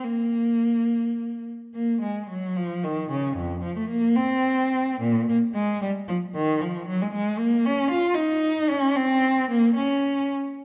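Classical, a baroque-style suite movement for unaccompanied cello in Bb minor, moving at 75 BPM in a flexible, rubato 6/8 with an introspective, grave mood. A single rich-toned cello plays alone and up front from 0.0 to 10.3 seconds, bowed with vibrato and expressive portamento across a range from F2 to F4. The short fragment, cut from a longer piece, sits in a moderate recital hall reverb.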